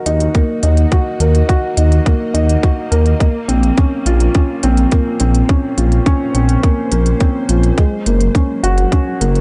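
A woody, slightly detuned upright piano carries a riff up front, its vintage tone muffled by a low-pass filter and trailed by tape echo, in this moving, cinematic piano-and-strings electronica cut from a longer piece in Bb minor at 105 BPM. A deep, rumbling detuned saw bass pumps against a tight kick, while crisp electronic hats tick along and a lush, bowed symphonic string section fades in from the background with sustained, vibrato-rich chords that also pump. The dry mix moves from Ebm to Bbmadd9 at 3.2 seconds and settles on Gbadd9 at 7.8 seconds.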